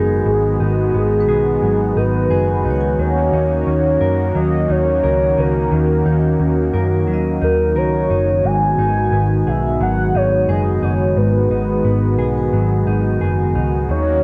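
A straight 4/4 pulse at 88 BPM carries this hazy, ethereal dream pop excerpt in G# minor, drifting from G#m7 to D#m7 and back. A velvety, vibrato-tinged synth lead sings the melody over a smooth, detuned analog pad, while a dark, clean fingered electric guitar plays arpeggios through lush chorus and delay, and a round, foam-muted picked bass sits up front. A metallic, ringing vibraphone glimmers in the background until 8.2 s, returning briefly at 12.4 s, all bathed in spring reverb and the warbling pitch drift of worn cassette tape.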